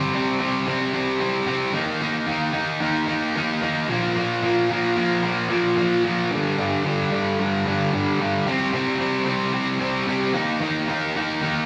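A straight, steady 4/4 pulse drives this brooding, dark rock fragment, cut from a longer piece. A lone fuzz guitar carries the whole 11.7 seconds, picked and distorted, with a bright, biting edge. Double-tracked and compressed, it sits up front, moving through power chords from C5 to Eb5, Bb5 and G5 before circling back to C5 and Eb5. Its range runs from G2 up to Eb4, giving the riffing a weighty low end. The sound was captured live in one room, and a large studio reverb adds a wet, cavernous tail around the guitar.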